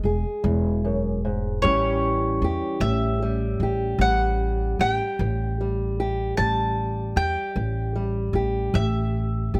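An unhurried 12/8 pulse at 51 BPM in dotted quarters carries this swaggering, rollicking acoustic country blues excerpt, moving from E to A7 at 1.6 seconds. A dark, boxy, old ladder-braced guitar fingerpicks the accompaniment beside a thumpy pizzicato upright bass on steel strings, both up front from the start. At 1.6 seconds a bowl-back mandolin enters with a picked, double-string melody, touched with plate reverb in a lightly reverberant room.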